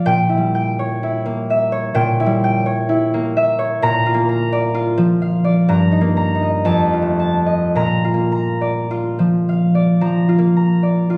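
Rubato and unhurried at 52-66 BPM in 4/4, this peaceful, graceful classical excerpt in Bb major features a solo concert harp, fingerpicked and ringing up front from F2 to Bb5, moving from an opening Bbdim7 through Eb/G and F7 to settle on Bb at 7.8 seconds, captured on a phone in the room with light reverb, added studio reverb and compression.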